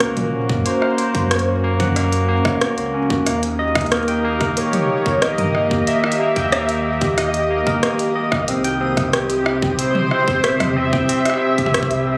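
A straight 4/4 pulse at 92 BPM drives this melancholic, intricate IDM excerpt. A glitchy, up-front drum kit of clicky hi-hats, rim clicks and toms is joined at 0.5 seconds by a tight electronic kick, both in studio reverb, above a round, deep sine sub bass. An overdriven tine electric piano, barky and gritty through a combo amp with tape echo, plays arpeggios beside a velvety, detuned sawtooth lead that carries the melody with chorus, vibrato, cassette tape and digital delay, while a warbling, nostalgic lo-fi pad holds sustained chords; from 3.5 seconds a very quiet, flickering granular texture drifts in, and shimmer reverb on the lead, pad and piano plus the club reverb of a phone recording in the room give a hazy sound moving through F#, D# and C.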